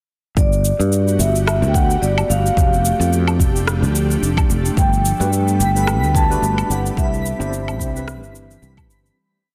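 A relaxed, sunny sunset chillout piece built on a swung lounge groove, where a metallic, ringing vibraphone with medium mallets and fast motor vibrato plays a motif-based melody of call phrases through delay over an ethereal pad of sustained chords moving between Gmaj9, F69 and Cmaj7. A growly, up-front fretless electric bass carries a dotted-rhythm line beneath a deep, tape-warm electronic kick and a light layered beat of cabasa, low woodblock and rim click with soft clipping on the snare. At 5.2 seconds a bright tine electric piano adds syncopated rootless chord stabs, and a moment later a faint, sparkling granular texture holds a high shimmering note in the background, before a fade-out from 6.2 seconds closes the dense, heavily limited mix.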